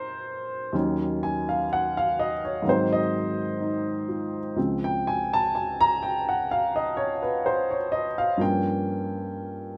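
Solo jazz at a slow 63 BPM in 4/4, swung on the eighths, with a moody, smoky feel across this brief excerpt from a longer piece. A dark upright piano plays alone and up front for the full 9.8 seconds, its woody, mellow tone carrying long sustain and audible action noise that make it feel intimate. Light reverb frames harmony moving from Bbm9 through Ebm7, Ab7 and Dbmaj7 before reaching Gm7b5 at 8.4 seconds.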